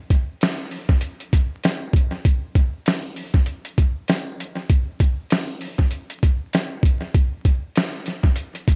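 A light reverb and heavy echo wrap this hip hop clip in vinyl crackle, giving it a smoky, mellow haze. A boom bap sampler-style drum kit sits up front from 0.1 s to 8.8 s, pitched down and compressed, with a thumpy kick, a medium-tuned snare and hi-hat, all rolled through analog delay and grooving in 4/4 with a loose sixteenth-note swing. The gritty kit drives this short cut from a longer piece.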